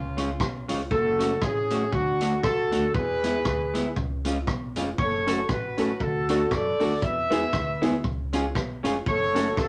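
A smooth, up-front horn section carries the melody with light vibrato in this mischievous, driving ska excerpt in F# minor at 118 BPM, swung over a looping C#, F#m, D, E progression. Beneath it, a thumpy gut-string upright bass is plucked, a dark, clean hollow-body jazz guitar is picked as accompaniment, and a vintage drum kit with a punchy kick, rolled-off top and tape echo plays hi-hat, kick and rim click alongside a very quiet, jingly tambourine. At 5.3 seconds, a woody, present upright piano joins with stabs, all set in a modest small-room ambience.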